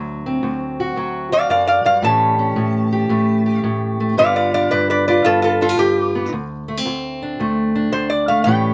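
Rollicking and soulful, this short cut from a longer acoustic country blues piece swings along in 4/4 as a duo over a D7, A7 and G7 progression. A dark, boxy parlour steel-string guitar, fingerpicked, carries the accompaniment from the start, and at 1.3 seconds a metallic, nasal resonator slide guitar, played with fingerpicks, enters up front with the melody and sits a touch louder. Close, detailed microphones and light reverb keep both guitars intimate and present.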